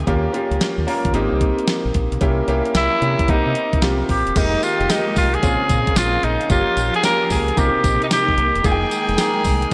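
A clear, up-front grand piano and a deep, round fingered electric bass open this punchy, bouncy new jack swing excerpt in F minor at 112 BPM, joined at once by a thumpy 12-bit drum machine with a medium-tuned snare, hi-hat, tambourine and crash, its gated reverb adding snap to the swung sixteenths. A raspy, gritty tenor saxophone takes the melody at 2.8 seconds, and at 4.4 seconds a lush, woody string section settles into bowed sustained chords in the background as the harmony moves through Fm11, Bbm9 and Gm7b5. The bright 1980s-style digital production sits in a wet hall reverb.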